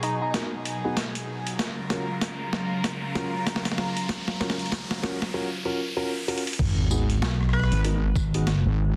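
A heavy, detuned wobble bass enters at 6.6 seconds for the drop, its sawtooth tone saturated with overdrive and chorus. It is joined by a round, punchy vintage slap bass, up front with tube saturation. This gritty, funky glitch hop excerpt moves at 96 BPM in 4/4 with a swung sixteenth feel in G# dorian, shifting from G#m7 to F#maj7 and back. The opening section is a build-up: a floating, bowed string section with 12-bit sampler grit and a nostalgic, warbling pad of detuned square and triangle waves sit under sidechain pumping, while a dark, boxy grand piano plays stabs through dub echo and a filter sweep, and an electronic riser in the background leads to a sub drop impact. A boom bap sampler-style kit with a high-tuned, soft-clipped snare, hi-hat, rim click, tambourine and crash stays up front with drum fills, over a thumpy, very quiet electronic kick, both re-recorded in a large room. 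Brief flashes of an edgy, tearing sync lead with vibrato and dub echo open the piece and return near 7.5 seconds, and the dense, heavily limited master carries light reverb and vinyl crackle.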